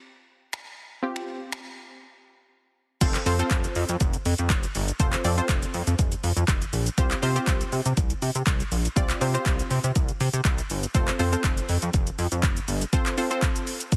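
Upbeat, euphoric dance-pop cut from a longer piece, opening on a detuned analog pluck with a filter sweep and sidechain pumping, joined at 0.5 seconds by an overdriven deep house kit of deep kick, metallic hats, snaps, claps and shaker, then after a short break a glossy, retro chorused synth bass drops in at 3.0 seconds as the chords move between Csus4 and F under light digital ambience and a heavily compressed, radio-like sheen.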